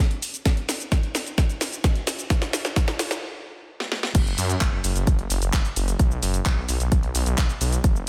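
Anthemic and triumphant, this festival progressive house passage runs at 130 BPM in a straight 4/4 and is cut from a longer piece. It opens on a build-up in which a house drum kit of crash cymbal, handclaps, hi-hat, shaker and a cracking snare plays fills, joined by a punchy electronic kick from 0.5 seconds. A brief stop arrives at 3.2 seconds before the drop lands at 4.1 seconds. There a detuned saw bass enters between F#1 and F#2, thick, beating and menacing, with a saturated, sustained tone, a fast attack and sidechain pumping. Both drum parts sound layered and tape-warm, re-recorded in a large room yet placed up front beside the bass, with little reverb overall.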